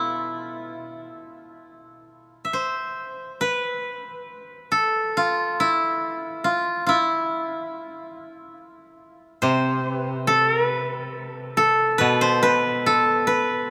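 Japanese traditional chamber music, calm and austere, drifts in a free rubato around 70 BPM in 4/4 in E miyako bushi tuned to A4 = 438 Hz, as an up-front, woody, fingerpicked koto carries the melody between E4 and E5 while a second, quieter koto adds low accompaniment from B2 to C3 in the opening moment and again from 9.4 seconds to the close at 13.7 seconds, the pair ringing in a moderate cathedral reverb.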